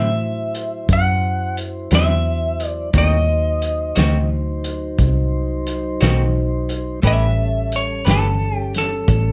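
A rollicking, swaggering slow blues in 12/8 at 59 BPM with a straight feel, this fragment of a longer piece has fat-snared, punchy-kicked vintage drums entering at 0.5 s on hi-hat, kick and snare, over a round, foam-muted fingered bass sitting up front. A slightly broken-up, compressed lead guitar carries the melody with plate reverb, while a clean picked electric guitar with tremolo accompanies until 8.3 s and a soft, flute-like tonewheel organ with key click holds chords through a slow rotary speaker. The harmony moves from a rootless D9 to D#dim7 and then A9, tuned to A4 = 441 Hz, in a dark, warm mix with light reverb.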